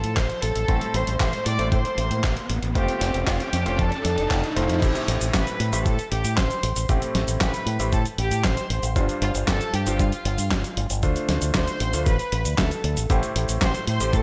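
A lightly reverberant mix opens on a background riser over the first 4.8 seconds, as a bittersweet, nostalgic italo disco groove settles in at 116 BPM in A minor. A gritty, tape-flavoured sampler-style kit with a medium-tuned snare, hi-hat, handclaps, cabasa, crash and gated reverb sits beside a thumpy electronic kick that arrives at 0.2 seconds, while an up-front fingered electric bass with envelope filter and tube saturation drives underneath. A bright, brilliant concert grand piano adds low-pass-filtered stabs from 0.7 seconds, and a reedy, gut-string violin section with light vibrato and delay carries the melody through chords moving from Am and F to Am7, G7sus4 and Dm7.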